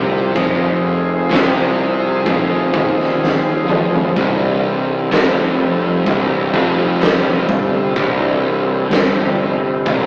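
A slow, straight 4/4 pulse at 63 BPM drives this brooding, hypnotic stoner and doom metal passage in C minor, cut from a longer piece. An oversized, low-tuned acoustic drum kit sits up front from 0.4 s, with a punchy kick, fat snare, toms and dark crash cymbals in a bright stone room, its gritty, saturated tone rolled off at the top, and a drum fill lands at 3.2 s. Up front beside it, a double-tracked fuzz guitar carries the picked, distorted riff in a low register, moving from F5 to C5 at 4.2 s. Further back, a growly, overdriven fuzz bass anchors the low end. A reedy tonewheel organ holds sustained chords through a slow rotary speaker, lightly overdriven with audible key click. Light reverb, tube saturation and an AM radio character give the rough rehearsal-room recording its lo-fi sound.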